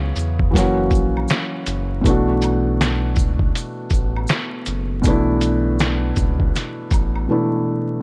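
Nostalgic and melancholic, this short lo-fi hip hop excerpt with a swung feel sets a soft, felt-muted upright piano, up front with cassette-tape coloring and a low-pass filter, over C#m7, F#7 and Bm11 chords, while a round, deep analog bass holds sustained notes beneath a compressed, pitched-down sampler-style drum kit of thumpy kick, medium-tuned snare, hi-hat, shaker and finger snaps, with maracas, woodblock and group handclaps tucked in the background, all under vinyl crackle and little reverb before a silent gap from 7.3 seconds.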